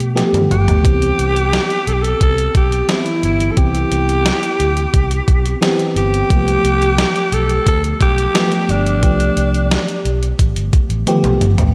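Nostalgic and glossy, this 1980s-style pop excerpt at 88 BPM sets a raspy, gritty alto saxophone melody with vibrato and scooped notes, which drops out at 10.1 seconds, over a dreamy FM electric piano layered with a soft pad and treated with chorus and slapback echo, a dark, round, punchy fingered electric bass, and a thumpy, up-front 12-bit drum machine whose fills open and close the passage, all washed in a lush hall reverb for a big arena sound as the harmony moves from G9 to Cmaj7 and back to G9.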